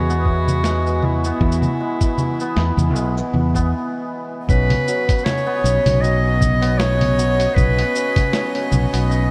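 Warm and playful, this short folktronica excerpt moves with a lightly swung 16th-note feel. A clear, classical-style clarinet carries the solo melody up front, and a hammered cimbalom rings and shimmers beneath it with arpeggios; both are bathed in a diffuse ambient delay. A fingered electric bass sits direct and close, paired with a thumpy, muffled electronic kick. A tape-toned, lo-fi sampler-style kit adds cabasa, congas, hi-hat and a medium-tuned snare, compressed and re-recorded in a small room. After a stop from 3.7 to 4.5 seconds, a string quartet enters at 4.5 seconds with soft-attack sustained chords, intimate and airy-bowed with light vibrato, resting in the background. A huge reverb soaks the whole mix in a dreamy haze.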